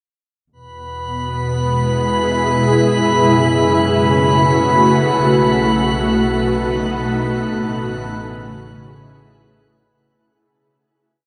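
In a straight, unhurried 4/4, this serene, weightless ambient piece drifts through E, F#m7, B7 and Amaj7, with an ethereal, airy pad up front holding slowly shifting chords, its detuned sawtooth tone warbling with a vintage ensemble chorus. A dark chamber double bass section, bowed with light vibrato, fades in from 0.5 seconds to sustain smooth root notes in the background. Above them, a glassy sine texture of drifting overtones holds a bright high note, all bathed in a long, wet shimmer reverb as the piece fades out from 5.2 seconds.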